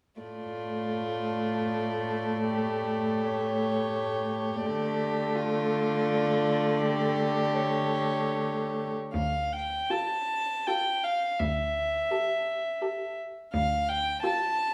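A pure, floating first violin sings the melody up front in this solemn, yearning excerpt of a slow romantic string quartet movement in D minor, moving with rubato in 3/4 at 70-86 BPM over a second violin's smooth-topped inner line, a dark, woody viola set distant, and an intimate, close cello bass with light vibrato and an airy bow, all four played sul tasto in a moderate recital hall reverb as the music turns to a new section at 9.1 s.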